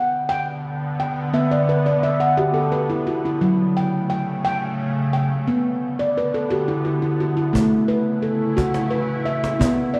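A ringing, airy handpan opens this hypnotic, meditative world excerpt with up-front arpeggios and fills in B minor at 58 BPM in 6/8, soon joined by a bright, detuned wavetable pad of evolving sustained chords with ensemble chorus, while a snappy cajon enters at 7.6 seconds as the harmony shifts to A, all wrapped in an echo-chamber reverb and the warbling pitch drift of worn cassette tape.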